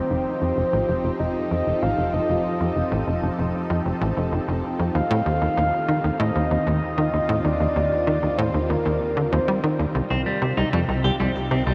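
Ambient, sequencer-driven space music at 96 BPM in 4/4 with a cosmic, expansive mood: a punchy, nasal sequencer bass riff drives from the start under a thick, detuned unison pad with chorus and phaser, while a mellow, round octave-layered synth lead carries the melody with shimmer reverb and tape echo until 9.8 seconds, a very quiet analog drone hums beneath from 1.4 seconds, and a twangy clean electric guitar enters with picked arpeggios at 10.1 seconds, all bathed in a huge, wet ambient reverb as the chords move from F7 to Eb6 to Cm7 in this excerpt from a longer piece.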